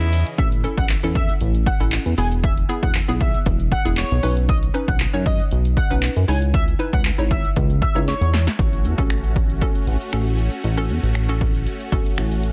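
Dance-pop at 117 BPM in straight 4/4, euphoric and summery, cut from a longer piece and tuned slightly sharp of standard pitch. A punchy analog drum machine drives it with kick, snare, hi-hat, handclaps and finger snaps, overdriven up front with soft clipping on the snare and a short room around the snare, clap and hats. Beneath it a chorused synth bass, glossy and retro with a mellow pulse-width tone, pumps with sidechain alongside a hollow, bouncy square-wave pluck that chorus thickens until 12.2 seconds. From 0.4 to 8.4 seconds an octave-doubled lead carries the melody, bold and detuned with vibrato, phaser and tape echo over the chords A, E, Badd9 and C#madd9. After a drum fill, huge, lush supersaw chords return at 8.6 seconds, pumping against the beat as the harmony settles on A6, all in a dry, dense, heavily limited modern mix.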